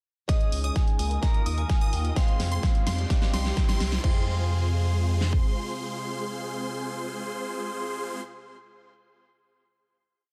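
A dense, heavily limited master with light reverb carries this anthemic, emotional festival progressive house build in F minor at 128 BPM. A huge, euphoric supersaw riff under a low-pass filter sweep plays alongside a bright, plucky phased lead playing arpeggios, a lush chorused pad, a dark, boxy fingerpicked swing guitar and a metallic, ringing vibraphone melody that ends at 3.5 seconds. Beneath them sit a deep, saturated off-beat sub bass, a punchy four-on-the-floor kick with huge snare, a second kit's fill of hats, snare and crash, and a very quiet riser, before the build resolves into a final Fm chord at 4.0 seconds.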